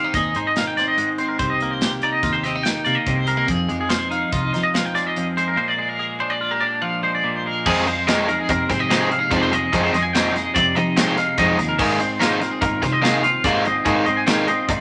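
Wistful and intricate, this short cut from a longer math rock and midwest emo piece moves at 144 BPM in an odd 5/4 metre with a straight feel. A bright, compressed twelve-string electric guitar picks out clean accompaniment up front, while a twangy electric guitar spins high arpeggios through a shimmering harmonic tremolo. Beneath them, a fingered electric bass sits round and foam-muted, and an acoustic drum kit with a punchy kick, medium-tuned snare, hi-hat and crash comes in at 0.1 seconds with an airy, polished small-room sound. At 7.7 seconds, as the harmony settles on Fm7, a dark, double-tracked overdriven guitar joins with a picked riff that adds weight to the second half. The chords drift from Abmaj7 through Fm11 and Bb7, and the mix is bathed in a lush studio reverb with a gently rolled-off top end.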